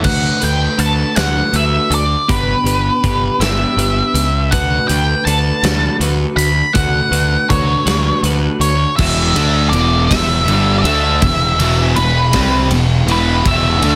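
A dark octave-fuzz lead guitar carries an up-front melody with slapback echo over a twangy twelve-string electric guitar playing arpeggios through a tremolo effect, an overdriven picked bass and a big-room rock kit with a punchy kick, while a background fuzz guitar sounds briefly at the start of this brooding, quiet-loud alternative rock passage in E minor, a slow 6/8 at 54 BPM cut from a longer piece. The chords move from D6 to G and back to D6. The twelve-string stops at 8.7 seconds, and at 9.0 seconds the harmony lands on Em as the bright fuzz guitar returns with its riff, joined by two very quiet thick fuzz guitars, one of them double-tracked, all under light reverb in a dense, heavily limited modern master.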